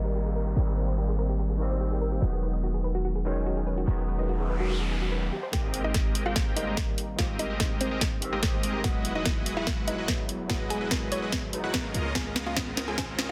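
Lush and bright, this half-time future bass excerpt at 145 BPM opens with a gritty, barky overdriven tine electric piano, a deep, boomy 808-style bass, a soft background pluck arpeggio with vintage sampler grit and background downlifter, noise sweep and riser effects over Abmaj9 and Emaj9 chords, before a huge, airy detuned supersaw riff, a woody mallet-like synth pluck melody with phaser, a punchy layered electronic kick and an up-front trap kit of sharp snare and bright hats arrive at 5.5 s, with sidechain pumping on the keys, bass and synths, and dub echo trailing the piano and both plucks.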